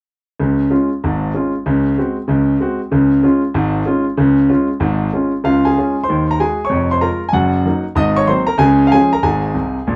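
A clear, up-front grand piano sits in a wet studio room with a half-second reverb, captured live, its natural tone and short sustain giving each note crisp definition. This playful, exuberant stride jazz in Db major swings at 190 BPM in 4/4, with the solo piano spanning F1 to Eb6 as it moves into a second section at 5.4 seconds, where the harmony passes through Ab7 over Eb, Db over F and Ebm over Gb before reaching Ab9 and Db. A quick piano fill at 9.5 seconds closes this cut from a longer piece.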